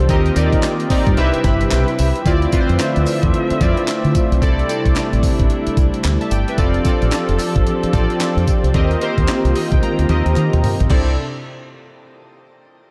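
Flirty and bouncy, this swung new jack swing R&B excerpt rides a gritty, pitched-up breakbeat kit with a thumpy kick and high-tuned snare up front, while a round, foam-muted fingered electric bass sits deep and dark underneath. Warbling, detuned analog keys with chorus and shimmer reverb carry the chords and add fills at 1.2 and 9.3 seconds. Soft-attack bowed strings with vibrato hold smooth sustained harmony, a barely audible group handclap adds a hollow human touch, and the drums break into a fill at 9.8 seconds within a dark, warm production.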